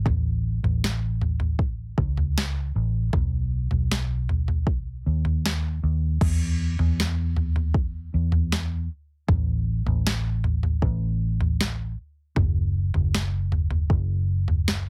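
Tender and heartfelt, this pop ballad excerpt at 78 BPM in a straight 4/4 pairs a dark, round, foam-muted fingered electric bass, amped and up front, with an electronic R&B drum kit whose soft kick, sharp snare, crash and toms carry an overdriven edge, all in a dry, heavily compressed radio sound that moves into a new section at 6.2 seconds.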